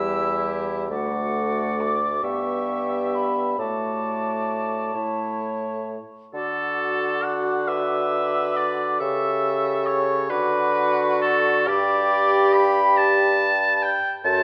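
Heard through a moderate concert-hall reverb, this yearning, melancholic passage from a slow romantic wind-quintet movement sways in a rubato 6/8, with a hollow, distant flute carrying the high melody over a clear, up-front oboe second line, a bright clarinet in the background and a vintage-toned French horn filling out the accompaniment, and a warm bassoon anchoring the bass, all five playing throughout its 14.4 seconds.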